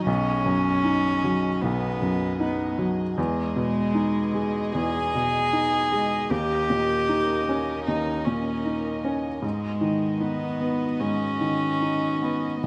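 A rubato 4/4 pulse at 77 BPM carries this intimate, tender neoclassical piece for piano and strings, cut from a longer work and moving through B6, Emaj7, D#7 and G#m7. A felt-muted upright piano sits up front with a soft, mellow tone and audible action noise, accompanying a rich, floating solo cello bowed sul tasto that adds a second line and carries a touch of slapback echo. Behind them, a chamber string section holds sustained bowed chords with light vibrato, set lower in the mix, all within a moderate studio reverb.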